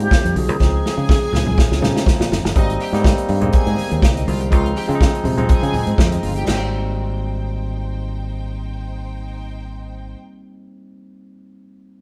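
A straight 4/4 disco groove at 122 BPM in Ab major, glamorous and danceable, rides on a tight, roomy soul drum kit with china cymbal, hi-hat, kick and snare, growly, punchy fingered electric bass, and very quiet, low-tuned congas. Bright, barky tine electric piano comps through a combo amp and plays a fill of its own alongside a drum fill, while a lush, bowed string section with vibrato carries a second line and a breathy, expressive alto flute sings a brief melody that ends at 2.3 s. Abmaj7 and Dbmaj7 alternate as the band plays live together in a moderate stone room, and the drums stop at 6.6 s in this cut from a longer piece.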